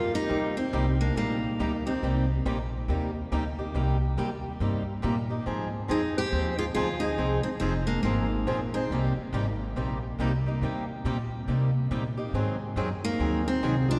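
A picked steel-string acoustic guitar states the melody up front from the opening moment, shadowed in the background by a dark, subtoned clarinet with light vibrato and scooped notes, over a woody, thumpy pizzicato upright bass on gut strings, in a fiery, virtuosic jazz manouche swing at 140 BPM in C minor. A boxy swing-style acoustic guitar with audible finger squeak and a plugged-in parlour guitar in the background carry the accompaniment through Cm7, Fm7 and Ab7, while the lead guitar and clarinet play in short phrases, returning at 5.9 and 13.0 seconds. A cathedral reverb with a 4.5-second decay sets the group in a resonant church or concert hall.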